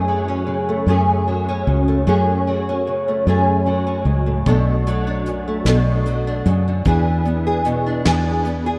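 A fingerpicked nylon-string guitar, up front and shimmering with ensemble chorus, opens this reflective, melancholic acoustic folk fragment in a straight 6/8, joined from the start by a round, punchy, foam-muted electric bass. At 4.5 s a soft brush kit of hi-hat, kick and snare slips in, dark with a rolled-off top, as the harmony moves from F#madd9 through Bm7 to E7. A long plate reverb soaks the mix in a dreamy haze.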